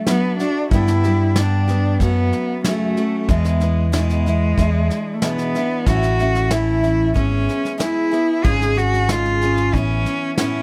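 A clear, focused bowed cello carries the melody up front with vibrato in this short, hopeful acoustic folk clip, backed by a bright, full-bodied picked steel-string guitar and a soft brush drum kit with a tight kick and natural snare. A round, dark fingered electric bass enters at 0.7 s and sits prominently in the mix. The chords move from D/F# through F#m, E7 and A to settle on Aadd9, all in a dry, intimate sound.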